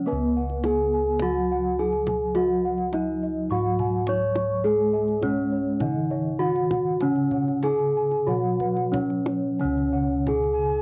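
In a straight 4/4 that moves between 89 and 105 BPM, this serene, shimmering Javanese gamelan passage in Db slendro is cut from a longer piece. A bronze metallophone carries the melody up front with a ringing, wooden-mallet attack. Beneath it, a second metallophone plays a soft accompaniment with padded disc mallets, and a third spins arpeggios higher up. Both have paired tuning that gives them shimmering beats in a boxy small room. Round, beating bossed gongs struck with padded beaters hold the bass, while a darker, smoother set of bossed gongs adds its own arpeggios in the same high register in the background. A tight, dry kendang played with hard hands runs from 0.5 to 10.5 seconds, and a breathy bamboo bansuri with vibrato and rolled-off highs slips in at 10.5 seconds, all captured on a home cassette recording with moderate reverb.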